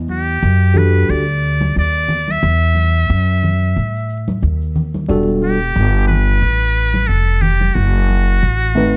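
Cool and nocturnal, this 90 BPM jazz-hop excerpt in E minor swings gently over vinyl crackle, with a woody, thumpy pizzicato upright bass up front, a buzzy, breathy metal-muted trumpet soloing with light vibrato, a worn, slightly out-of-tune tine electric piano entering at 0.7 seconds with mellow chords moving from E9sus4 to Em11 and F#dim, and soft-handed congas and tube shaker sitting compressed in the background.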